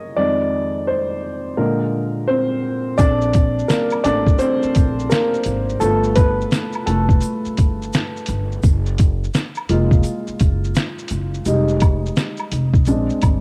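This lo-fi hip hop excerpt moves at a relaxed 85 BPM in 4/4 with a 16th-note swing, set in Bb major and carrying a nostalgic, dreamy mood. A dark upright piano opens alone, its mellow, vintage tone softened by cassette tape and a low-pass filter as it outlines Fm7 and Bb7. At 3.0 seconds the rest of the band arrives. A woody, gut-strung pizzicato upright bass sits low with a touch of tube saturation, and a compressed, pitched-down sampler-style drum kit brings a thumpy kick, a fat snare, hi-hat and shaker up front. A close tube shaker and woodblock sit quietly in the background. The harmony drifts through Bbmaj9, G9 and Gbmaj7 before circling back to Fm7 and Bb7, all wrapped in light reverb and the hazy, home-recorded character of cassette tape.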